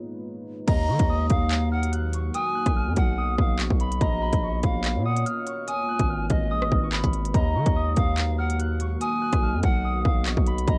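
A distorted 808-style bass, saturated and heavy, sits up front with a drill kit of hard-clipped kick, crisp hats, handclaps, rim clicks and crash in this dark, tense half-time drill excerpt at 144 BPM in Eb minor. A deep, detuned sawtooth pad with chorus holds sustained chords from the start, and at 0.7 seconds the bass, drums, a ringing fingerpicked concert harp melody filtered through cassette tape, and an airy, reedy pan flute second line with vibrato and tape echo all enter together. The home cassette recording stays dry and close, the chords moving through Ebm, B, Bbm and Abm.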